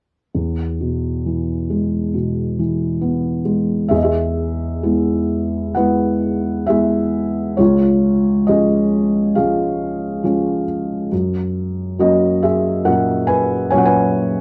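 A felt-muted upright piano carries this brief classical fragment alone, its thick felt giving each note a soft, mellow, intimate tone with the clatter of the action audible beneath. The mood is peaceful and tender, and the pulse stretches and relaxes freely in rubato, so the beats never fall quite evenly. Sitting up front in a dark production with light reverb, the piano spans a range from low bass notes up into the upper middle register, sounding smooth and a little vintage. The harmony rests first on E, moves to C# at about 7.6 seconds and settles on F# at 11.1 seconds, as a second section unfolds from 3.9 seconds until the cut at 14.4 seconds.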